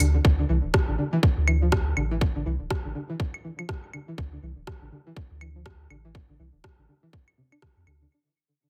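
A twangy, string-like resonator pluck with chorus, delay and sidechain pumping plays a riff over a round, deep analog bass and a garage kit of crisp hi-hats and rim clicks, with delayed claves, before a tight, up-front electronic kick arrives at 0.2 s. This clinical, cool minimal techno excerpt rides a swung sixteenth-note feel, while a filter sweep runs across the pluck and the whole passage fades out over its 8.1 seconds. The mix carries a heavily compressed radio character with light reverb, the drums sounding tape-warm as if re-recorded in a large room.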